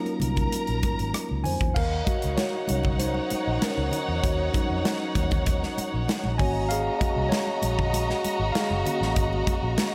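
Set in a steady, straight 4/4, this lush 1970s-style soul passage feels cinematic and bittersweet. A modern studio kit sits up front with a punchy kick, bright cymbals, a medium-tuned snare and rim clicks, while very quiet, dry congas and a dark, round, foam-muted fingered bass fill out the groove. A clean tine electric piano takes a solo from 1.8 s, and a lush bowed violin section with warm vibrato and a smooth top carries a second line, all in light reverb.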